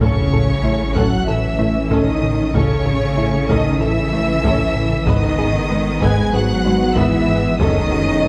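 A straight 4/4 pulse at 95 BPM drives this vast, futuristic stretch of hybrid orchestral and electronic film score, cut from a longer piece and tuned slightly above standard pitch, with the harmony moving from A to G#m at 5.1 s and on to F#m. Heavy-stick solo taiko drums sit close in the background, and a huge, dark sub drop rumbles very quietly beneath the opening impact, which runs until 2.5 s. The low end stacks a rubbery, hollow square-wave bass riff with a filter pluck, a clean sine sub bass, a focused double bass section and an expressive cello section. Above them, a distant violin section carries a smooth, even melody with vibrato, joined by a second violin line with a soft attack, while a woody viola section adds accompaniment. Mellow French horns and trombones hold sustained chords alongside a blurred, evolving granular cloud pad. A tine-like FM synth pluck with chorus traces very quiet arpeggios, and a scoring-stage reverb gives the ensemble a lush, spacious sound.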